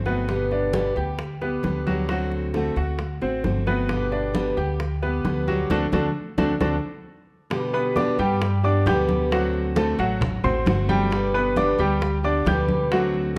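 A dark production in a large studio room frames this sunny, relaxed stretch of Cuban son and guajira, with a full-bodied picked steel-string acoustic guitar (finger squeak audible), a woody pizzicato upright bass and smooth, short-sustained grand piano arpeggios all up front. Ringing, low-tuned congas and tight, dry, high-tuned bongos, both played with soft hands, sit in the background as the harmony sways between G and D7. The band hits an accent from 5.7 s, capped by a drum fill at 7.1 s that leads into a new section at 7.5 s.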